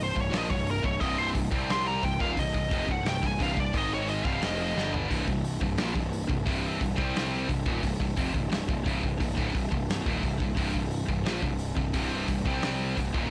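Aggressive and epic, this heavy metal excerpt in C minor at 88 BPM opens with a dark, up-front high-gain lead guitar solo that stops at 4.9 seconds, just as a drum fill at 4.8 seconds hands off to the second section, while two bright, distorted rhythm guitars, one scooped and one sitting in the background, grind out riffs over a growly fuzz bass and a punchy, mid-forward studio drum kit, all in a dry, blown-out, overdriven recording.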